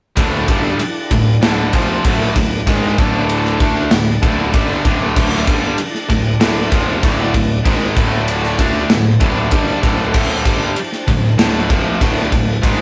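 Hard rock with a menacing, heavy mood, this short cut from a longer piece drives a straight 4/4 feel over a single D minor chord. Three electric guitars play the riff from 0.2 to 12.8 s: a tight, picked distorted part, a double-tracked high-gain guitar set in the background, and a scooped high-gain guitar that is very quiet. A fuzz-soaked picked bass with overdrive holds the low end from the background, while a gritty tonewheel organ with chorus vibrato and a slow rotary speaker sustains thick chords very quietly. The gated 80s drum kit is the most up-front element, with a punchy kick, medium-tuned snare, and bright crash and ride cymbals in a stone room. Moderate reverb and the rough rehearsal-room recording lend a saturated, raw edge.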